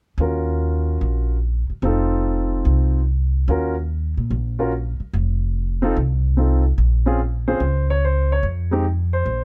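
Jazz piano trio in a swinging, moody Bb minor at 146 BPM, where a dark, mellow baby grand with long sustain carries the melody over Ebm9 and F7 changes alongside a woody pizzicato upright bass up front, both playing from 0.2 to 9.4 seconds in a dry, closely miked sound before the harmony turns to Bbm at 6.8 seconds in this brief cut from a longer piece.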